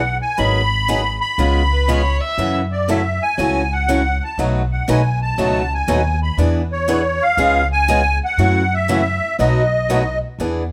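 A reedy, shimmering musette accordion carries the melody up front from the very start, over a growly, woody pizzicato upright bass, in this lively, swinging excerpt of jazz manouche from a band playing live in one room with light reverb. Two picked acoustic guitars join at 0.4 seconds as accompaniment, one bright parlour guitar and one swing-style guitar with old strings, both boxy, moving through G#m7, C#7, F#m7, B7 and E7. A clear, biting bowed violin with light vibrato adds a brief second line from 1.7 to 2.5 seconds.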